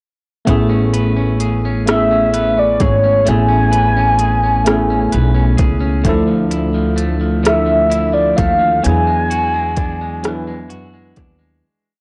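A dry, gritty hardware recording with cassette-tape haze and transformer saturation carries a sensual, slow six-eight R&B piece in A major at 43 BPM. Up front, an overdriven electronic drum kit with soft kick, crisp hats and rim click sits with a woody pizzicato upright bass that slides through chromatic approach notes. Above them, a worn, slightly out-of-tune barky tine electric piano plays rootless chords with grace notes, and a twangy, edge-of-break-up electric guitar plays a fingerpicked roll. A round, warbling horn-like synth lead with chorus and vibrato enters at 1.9 seconds with call phrases over Amaj9, Dmadd9 and E9, before the music fades out from 8.8 seconds.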